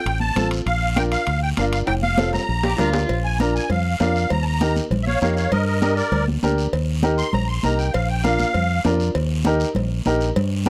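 Cumbia at a brisk 198 BPM in Bb major, this joyful, danceable clip from a longer piece is led by a reedy, shimmering musette accordion, up front and close-miked, whose solo begins at 3.1 seconds and carries the tune until it drops out at 8.8 seconds. Beneath it, a round, dark fingered electric bass sits forward, while a woody vintage upright piano with short sustain comps and a dark, nasal bowed cello adds a brief expressive line with vibrato and portamento at 2.6 seconds. High-tuned, damped congas in the background, a raspy guiro and ringing metal-shell timbales and cowbell drive the groove, with a drum fill leading into the solo, all in a dry, close 1970s-style studio sound over chords moving between Bb, Eb, Gm and F.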